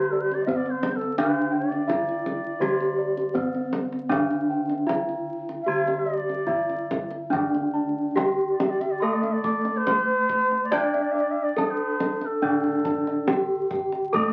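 A ringing bronze metallophone carries the melody up front with shimmering paired-tuning beats, leading a serene, ceremonial Javanese gamelan passage in which a pure, reedy bansuri plays a second line, a boxy lower metallophone accompanies in the background, mellow padded bossed gongs spin arpeggios over dark bossed-gong bass, a deep kendang drums from 0.3 s, and an airy horn-mallet metallophone adds bright arpeggios from 7.3 s, all heard through the crackle of a very old 78 rpm record.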